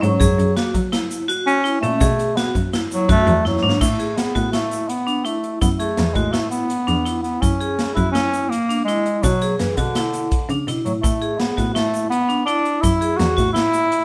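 Progressive instrumental band music in 5/4 with a bright, driving mood, this excerpt features a clear, classical-style bass clarinet carrying the melody up front, soloing from 0.0 to 3.8 seconds, over ringing, metallic hard-mallet vibraphone arpeggios with motor vibrato, a rich bowed cello bass line with vibrato and expressive portamento, a polished, swinging big-band drum kit with a punchy kick that plays a fill just before the 3.8-second mark, and a grainy egg shaker sitting in the background, all in moderate studio reverb with lossy compression artefacts.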